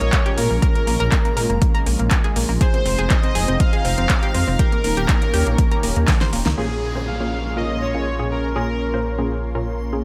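This bittersweet, emotional progressive house excerpt opens with a smooth supersaw melody colored by cassette tape and dub echo, a thick chorused and phased unison pad, a round analog pluck playing arpeggios and a rumbling detuned saw bass, each pumping to the sidechain, while a faint reversed, granular texture hovers high above. A deep house kit with a fat snare, metallic filtered hats and handclaps plays from the start, joined at 0.1 seconds by a punchy, overdriven electronic kick up front, leading to a drum fill at 6.1 seconds. At 6.6 seconds the drums and arpeggios give way to mellow, wave-folded unison pluck stabs with dub echo and a downlifter in the background, under light reverb.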